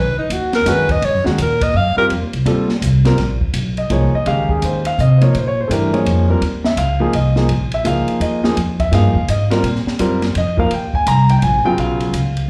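A swinging 3/4 pulse at 167 BPM drives this searching, intense modal jazz passage, cut from a longer live performance and heard through a club's PA with moderate room reverb. The clear alto saxophone opens up front, its vibrato and breathy subtone carried by plate reverb and slapback echo, but its line lasts only until 2.1 s. Beneath it, a woody, growly pizzicato upright bass with steel strings thumps throughout. A dark, smooth drum kit with a high-tuned snare, boomy kick and dusky cymbals sits lower in the mix. The concert grand piano enters at 0.7 s, intimate and vintage in tone with deep bass and audible action noise, sharing the sax's plate reverb and slapback echo. From 3.2 s the music settles into Bb dorian, moving from Bbm11 to Ebsus4, back to Bbm11 and on to Eb5 before landing on a rootless G#m11.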